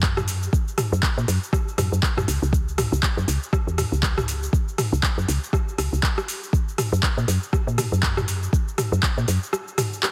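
Afro house at 120 BPM with a shuffled sixteenth swing and a spiritual, earthy mood, this excerpt pairs a deep, up-front electronic kick with an overdriven, layered deep house kit of cabasa, handclaps, metallic hats, rim clicks and toms, while a round, woody FM bass with a fast attack and mellow decay pumps against the sidechain until 9.4 seconds, all set in light digital ambience with a heavily compressed radio sound before a short break at 9.5 seconds.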